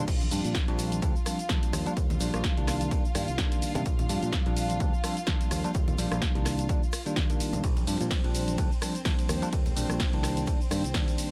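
Set in a digital ambience, this funky, joyful slice of filtered disco house pumps to a sidechained pulse as a bell-like, gritty phased electric piano and a dark, softly bowed violin section ride over Bb6/9, Ebmaj9 and Cm9 chords, while a growly fingered electric bass, an up-front punchy electronic kick, a dry analog drum machine of snare, rim click, hi-hat, ride, crash and cabasa, and distant, very quiet tube shaker and congas carry the swung groove.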